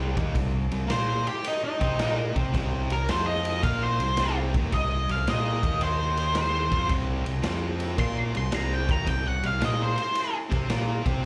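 A swung 4/4 feel drives this brooding, gritty blues rock and southern rock power-trio cut from a longer live gig heard through the venue's PA, where a saturated garage drum kit with a punchy kick, ride and medium-tuned snare sits up front beside a growling, overdriven fingered bass and a bright, double-tracked fuzz guitar riff with slapback echo, while a dark octave-fuzz lead guitar with slapback echo enters at 0.9 s to solo over C minor and power-chord changes in light club reverb.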